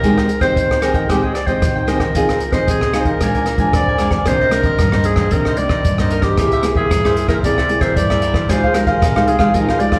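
Heard as a live club gig through the venue's PA, wrapped in moderate studio room reverb, this sunny, festive samba and choro excerpt moves at 114 BPM in straight 4/4 and settles into C minor at 4.3 s. A distant, roomy clarinet carries the classical-style solo melody with slapback echo, over crisp picked cavaquinho (also echoed) and fingerpicked classical nylon-string guitar, while an up-front open jazz kit with a dark, smooth tone and boomy kick plays hi-hat and rim click. The harmony runs from Abmaj7 through Fm7 and Bb7 to Cm9, C7b13 and Fm9.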